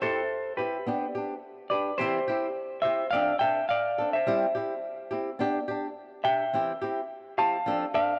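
A dark, clean semi-hollow electric guitar carries a fingered melody from G4 to A5 over a warm, fingerpicked flamenco guitar accompaniment from E3 to A4, both up front from the first moment of this joyful, carefree highlife passage cut from a longer piece. At 106 BPM in 4/4 with a lightly swung sixteenth-note feel, the harmony moves between C, G and F6 in C major, tuned to A4 = 443 Hz, with a new section arriving at 2.0 seconds. A moderate plate reverb lends the recording a lingering sheen, and the flamenco guitar stops at 8.1 seconds, just before the electric guitar finishes at 8.2 seconds.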